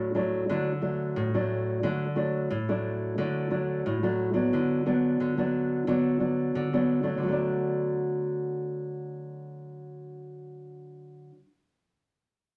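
Lively and sunny, this short samba fragment from a longer piece features a solo nylon-string guitar, thumb-plucked with a classical touch, a warm tone and fresh strings, sitting up front in a wet small room as it moves from D to Bm/D at 4.5 seconds and back to D at 7.2 seconds.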